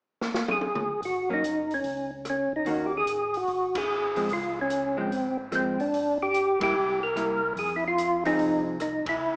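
A reverberant, hall-like recording with a small-speaker sound carries this soulful, bluesy soul jazz organ trio excerpt in swing, where a dark, boomy-kicked acoustic drum kit opens with a fill at 0.2 seconds, a fat, percussive tonewheel organ with key click, chorus vibrato and slow rotary speaker takes the up-front melody from 0.5 seconds, a round, mellow tonewheel organ bass on slow rotary enters at 1.0 seconds, and a clean, picked hollow-body electric guitar adds accompaniment over chords like Ab7sus4, Dbmaj7 and Fm7, with band accents punctuating the groove.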